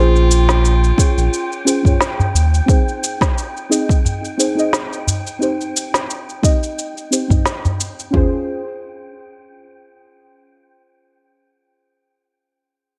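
A deep, mellow chord stab carries this hypnotic, earthy organic downtempo excerpt. Its warbling vintage tone is shaped by chorus, cassette tape colour, sidechain pumping and digital delay as it moves through Bbm7, Ab, Cm and Dbmaj7 over a gently swung groove. A bright, classical-style solo clarinet states a brief melody at the outset, while a round analog bass, loud and up front with its own sidechain pumping, sits beneath only until 2.6 seconds. An airy, breathy wind-like noise texture with built-in reverb hovers high in the background. Electronic cabasa and a woody snare, re-recorded in a large room, join at 0.2 seconds, and a layered deep house kit with an overdriven kick and toms arrives at 1.0 second, followed by a small, close acoustic udu. The mix sits in light reverb and digital ambience, and later the drums and texture fall away, leaving the chord stab to carry the closing section.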